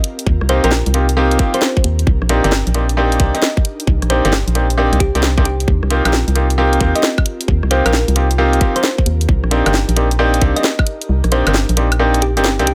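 UK garage in a bouncy, late-night two-step groove with swung sixteenths, cut from a longer piece, built on a tight, up-front electronic kick and a layered garage kit of hi-hat, rim click, cracking snare and woodblock, while a hollow, dark, organ-like FM bass sits close under them. A brilliant baby grand piano punches out stabs over chords moving between Eb6 and Cm7, a round, tine-like synth pluck with chorus, phaser and digital delay carries a gentle melody in the background, and a very quiet, airy, breathy pad holds sustained chords underneath. The sound is dry and close, and the kick drops out at 11.1 seconds, leaving the other parts to carry the final moments.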